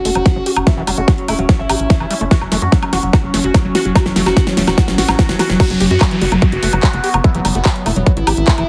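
Psychedelic trance at 146 BPM in F# phrygian, this intense, psychedelic cut from a longer piece builds for 5.6 seconds with a drum fill from the huge-snare big-room kit (crash, handclaps, hi-hat, woodblock) and a punchy up-front kick, while a filter sweep works over a squelchy, resonant acid bass riff in the background, a tight, dark sequencer bass drives underneath, a screaming, guitar-like overdriven lead carries the melody through distortion, phaser and dub echo, and a morphing, warbling wavetable pad sustains chords, before the drop arrives at 5.6 seconds on a rootless Esus2 as a downlifter sinks into the background, all under sidechain pumping on the lead, pad and acid bass and a heavily compressed, radio-like sound with light reverb.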